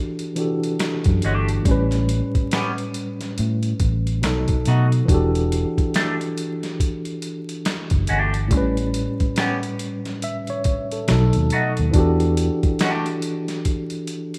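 A worn, slightly out-of-tune tine electric piano opens this late-night, introspective neo-soul and R&B excerpt at 70 BPM in E dorian, moving through Em11, A9 and B7 with a lazy sixteenth-note swing. A gritty, pitched-down boom bap drum kit with a thumpy kick sits up front, joined by a twangy, picked clean electric guitar through phaser at 0.8 seconds and a dark, foam-muted fingered bass with a round, punchy tone at 1.1 seconds. The rough home-demo mix carries light reverb and vinyl crackle, with the bass dropping out at 12.7 seconds while piano and drums carry on to the end.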